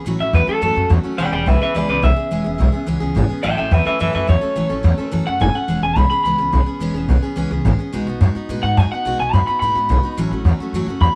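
A light reverb and small-room ambience surround this short, upbeat, retro rockabilly cut, taken from a longer piece and driven by a thumpy, woody pizzicato upright bass with gut strings sitting up front. A jumbo steel-string acoustic guitar supplies bright, full-bodied picked accompaniment, finger squeak included, as the chords move between A6, E6 and B6. Through a small old amp, a twangy, slightly broken-up, lo-fi electric guitar plays the picked lead from 0.2 seconds, also up front and colored by tape echo.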